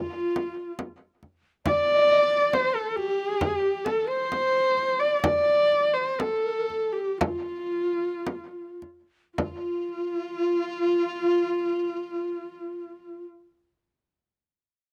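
Recorded outdoors with light reverb, this excerpt of proud, galloping Mongolian folk music in the F gong mode moves in 4/4 at 52-69 BPM and slows from 1.7 to 9.4 seconds, with a husky, expressive horsehead fiddle carrying the bowed melody up front with vibrato and portamento, a hollow, buzzing large bamboo dizi playing a mellow second line in the background, and a deep, dry frame drum struck with hard hands up front from 0.4 to 9.9 seconds.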